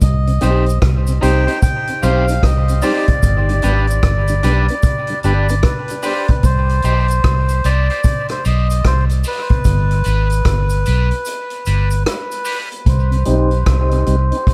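A reedy, breathy melodica carries the tune through dub echo over a dark, foam-muted bass and a vintage kit with a punchy kick, all opening together in a meditative, spacious dub reggae groove at 75 BPM in C minor, swinging gently between Cm and G. A bright grand piano adds brief stabs early on, while a twangy, slightly broken-up guitar joins in and a clean tonewheel organ with chorus vibrato sits in the background, and a cabasa echoes faintly in the background until 12.7 seconds. A filter sweep runs from 3.2 seconds, a break arrives at 11.3 seconds, and a part drops out for the closing moments in an echo-heavy small-room mix.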